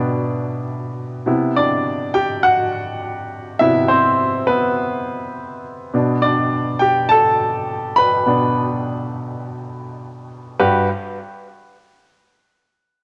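A clear baby grand piano opens this pop excerpt on its own, playing from the very first second in G major at a steady 103 BPM in straight 4/4. The mood is anthemic and uplifting, carried entirely by this solo piano, which ranges from G2 up to B5. Its tone is polished and up front, with a short sustain, and an analog delay adds repeats behind the notes. The harmony moves from Gadd9/B to Cmaj7 at 1.3 seconds, returns to Gadd9/B, and arrives on Gmaj7 as the piano finishes at 10.9 seconds. A moderate small-room reverb and the home-cassette recording give the sound an intimate, homemade character, and the fragment is clearly cut from a longer piece.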